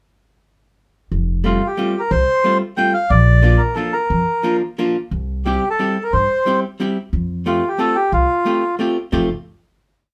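A mellow, reedy accordion with a dry tuning and full tone-chamber sound sits close and up front, carrying a motif-based melody in period phrases through this short, whirling and charming musette waltz in F major at 180 BPM. A dark, clean, picked hollow-body archtop guitar plays close-voiced backbeat chords, while a woody, thumpy pizzicato upright bass on gut strings holds root and fifth on the main beats from 1.1 seconds, moving through Fadd9, Bb and C before returning to Fadd9. The trio plays live together in a moderate studio room, and the complete piece ends on a final chord at 9.1 seconds.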